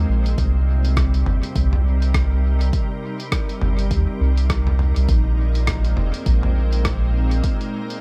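Ambient dub with a deep, hazy mood, cut from a longer piece, where a round, mellow sub bass sits up front beneath a calm, warbling organ-like pad carrying ensemble chorus and built-in reverb, while a muffled, overdriven sampler-style kit of hi-hat, rim click and toms trails dub echo and a tape-warm electronic kick pulses in the background, moving from Cm7 to Bb9sus4 at 5.1 seconds.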